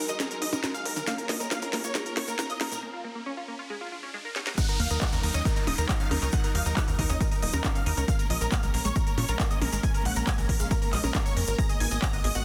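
Bittersweet and soaring, this uplifting trance passage in Eb minor drives along at 137 BPM in a straight 4/4, cut from a longer piece. It opens in a build-up, with a huge, euphoric supersaw lead carrying the melody through a phaser, low-pass filter and dub echo, over rich, lush bowed strings holding sustained chords and a tight, detuned arpeggiated synth sitting in the background under a filter sweep. A punchy sawtooth sequencer bass with tube saturation, a layered techno drum kit with a cracking snare, smooth hats, handclaps, crash and percussion blips, and a grainy, distant egg shaker fill out the groove, while a riser and downlifter enter in the background at 1.6 seconds, the riser climbing toward a short break. The drop lands at 4.6 seconds, where an up-front electronic kick and a round, warbling vintage analog pluck join as a high second line, dressed in chorus, cassette tape colour and tape echo. 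The lead, strings, arpeggios, bass and pluck all pump with sidechain compression as the chords move from Ebm to Bbm7 and close on Abmadd9. Light reverb and a dense, heavily limited modern master keep the sound loud and polished.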